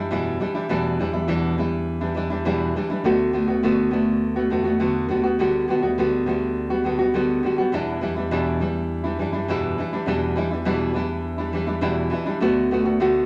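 A wet, large studio reverb with a 1.2-second decay surrounds this short acoustic pop passage, cut from a longer piece and tuned to A4 = 444 Hz. A fingerpicked nylon-string guitar sits up front as the accompaniment, full-bodied and deep in a classical way, ranging from E2 to F#4 with an audible finger squeak. Beneath it, a bell-like tine electric piano takes the bass role between D2 and F#2, its bright, clean and direct tone sitting lower in the mix. Both parts play together for the whole 13.3 seconds at a steady 102 BPM in straight 4/4. The harmony moves through Em7, D6, Gmaj7/D and back to Em7 before returning to D6 at 12.4 seconds, giving the music a heartfelt yet carefree mood.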